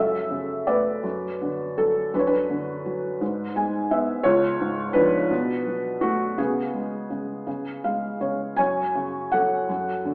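A soft, felt-muted upright piano sits up front, playing a lyrical, melancholic classical solo in F# minor at a rubato 56 BPM in 6/8, tuned to A4 = 439 Hz and ranging from C#2 to G#5. Its mellow, intimate tone drifts through F#m7, D6/F#, Bm/F# and G#dim toward C# and Bm7 before settling back on F#m at 8.6 seconds, with brief felt piano fills at 3.2 and 7.5 seconds. A wet recital-hall reverb and an AM-radio coloring cast a dark shade over this short passage cut from a longer piece.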